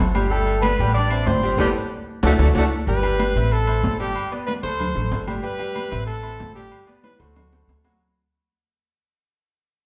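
At 187 BPM in a straight 4/4, this festive, joyful salsa in G major drives forward on a woody, thumpy upright bass played pizzicato up front, with ringing timbales and agogo bells and bright, high-tuned congas sitting in the background. A punchy, dark horn section carries the melody in tight octave doubling from the start, with a light vibrato, while a brilliant grand piano supplies accompaniment whose intimate sound lets the action noise come through. The band hits an accent and a drum fill before the horns give way, and at 2.9 seconds a clear, close-miked trumpet takes over the melody as a solo with its own light vibrato. The harmony circles through Gadd9, Am7 and D chords, closing on D7. A large studio reverb places the whole band further back in the room, a second drum fill arrives near the end, and the music fades out from 2.9 seconds in this excerpt cut from a longer piece.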